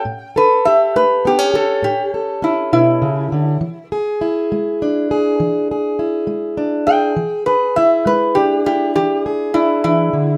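A metal-body resonator slide guitar, played with a steel bar and fingerpicks, carries a metallic, nasal, mellow melody up front from the first second while a boxy, parlour-toned fingerpicked steel-string acoustic accompanies it, together forming a rollicking, soulful acoustic country blues in E mixolydian at 68 BPM in a straight 12/8, tuned to A4 = 444 Hz, moving from A7 to E7 at 3.6 seconds in this brief fragment of a longer piece, all heard through a wet studio reverb and a rough home-demo mix.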